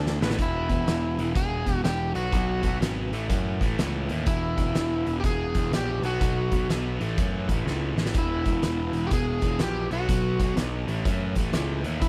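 Swinging at 124 BPM in 4/4, this raunchy, gritty blues rock and southern rock power-trio excerpt in E major opens with a drum fill before a fingered, overdriven slide guitar enters at 0.4 s over a sludgy, double-tracked distorted guitar riff, a growly, up-front picked electric bass and an oversized, low-tuned, saturated drum kit with a fat snare, boomy kick and bright, pumping stone-room sound, with another fill at 7.7 s as the chords cycle through E, B5 and A in a dry mix.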